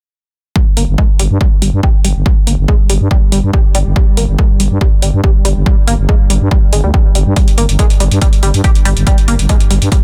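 A punchy, up-front electronic kick anchors this excerpt of peak-time techno at 141 BPM, joined from 0.8 seconds by metallic electronic hi-hats and a thick, growling FM bass with sidechain pumping. A tight sawtooth synth riff with a filter pluck, chorus, tube saturation, tape echo and its own sidechain pumping evolves over the groove, while from 2.8 seconds a very quiet, deep, moody pad of detuned unison sawtooth and sub octave drones underneath with built-in reverb. The dense, heavily limited master carries little reverb, giving the track a driving, intense mood.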